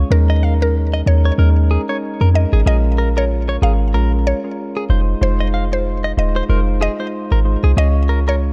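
Afrobeats with a sultry, hypnotic feel and a lightly swung groove, this short cut from a longer piece rides a deep, boomy 808-style bass sitting up front beneath soft, mellow electric-piano-like synth keys treated with chorus, moving through Eb7sus4, Bbm7, Fm7 and Db. A woody, percussive mallet-like synth pluck carries the melody with chorus and delay, while a clean, picked electric guitar, recorded direct and compressed, plays a riff through its own delay from 0.3 seconds. The production is dark and dry, with little reverb and a faint mains hum.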